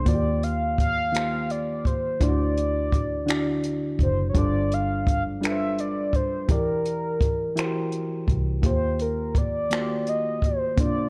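A mellow, horn-like synth lead carries the melody from the first moment, its soft attack and sustained, round tone colored by chorus, vibrato, a filter sweep and a slapback echo, while a reedy electric piano and a dark, foam-muted fingered bass enter alongside it. This is a slow, intimate R&B piece in six-eight at 56 BPM with a straight feel, tender in mood and cut from a longer performance. The electric piano sits up front with a slightly out-of-tune, worn character heard through its built-in speakers, bathed in spring reverb, as it moves through Eb69, D7, G7sus4 and Em7b5 before returning to Eb69. The vintage bass is amped and punchy, anchoring the low end. A compact cocktail drum kit joins at 0.1 s with finger snaps, hi-hat and a punchy kick, its acoustic sound smooth and placed up front. The whole recording sits in a small room ambience with the warbly pitch drift of old cassette tape, giving it a hazy, vintage glow.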